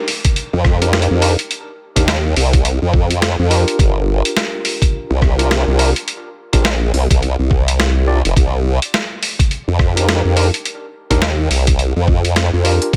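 A detuned sawtooth wobble bass with a sweeping formant filter, chorus and tube saturation enters up front at 0.5 seconds in this playful, gritty glitch hop fragment at 105 BPM in C minor with a 16th-note swing. It arrives over clean tine electric piano stabs heard through built-in speakers with sidechain pumping and dub echo, which open the fragment over Cm9, Gm7 and back to Cm9. Just behind them come a compressed boom bap sampler-style kit of hi-hat, rim click and high-tuned snare re-recorded in a large room, and then a thumpy electronic kick, all in a dry mix.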